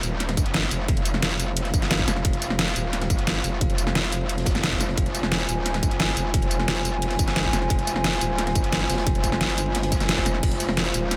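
Lightly reverberant and tense, this aggressive dark technical drum and bass cut from a longer piece drives at 176 BPM in F minor, holding on an F minor chord. An up-front, distorted metallic wobble bass with chorus, tube saturation and sidechain pumping sits prominently in the mix, while a moody, nasal, detuned analog pad sustains chords above it with a slow attack and its own chorus and pumping. The up-front dubstep drum kit brings a deep snare, crash, hi-hat and tambourine, a punchy electronic kick joins at 0.4 s, and a very quiet crunchy breakbeat kit adds a smooth, rolled-off ride and snare from a small room.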